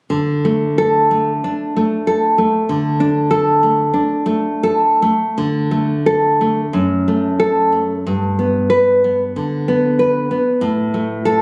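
A fingerpicked nylon-string guitar carries this short romantic solo, full-bodied and up front with fresh strings and audible finger squeak. In D major and 4/4, the playing moves with a free rubato feel between 76 and 96 BPM, outlining D5, then F#m at 6.7 s and G at 8.1 s after a new section opens at 5.4 s, for a sunny, nostalgic mood. Captured on a phone in the room with light reverb and compression, it is a brief cut from a longer piece.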